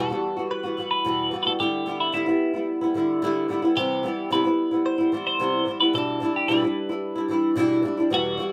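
A straight 4/4 pop pulse at 111 BPM in G major carries this carefree, heartfelt excerpt, where an up-front, double-tracked flamenco guitar fingerpicks acoustic accompaniment with audible finger squeaks through Emadd9, G6/D, Cmaj7 and G6/B while a bright, twangy, compressed twelve-string electric guitar picks a clean, phaser-tinged melody between E4 and C5, all in light reverb with the rough feel of a home demo.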